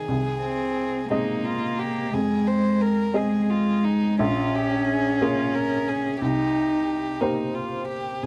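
Reflective and fragile, this neoclassical piece for piano and strings drifts in rubato 6/8 at 59 BPM, moving through Ab/C, Fm7, Bbm7 and Cm7 in a short passage cut from a longer work. A worn, woody upright piano, slightly detuned with short sustain and sitting up front, carries the accompaniment beneath a single violin playing the melody sul tasto with an airy bow and light vibrato, while a solo cello, also up front and softly bowed, shapes a second line until 7.2 seconds. The close, dry sound of a 1970s-style studio, touched by a small room's reverb, keeps the trio intimate.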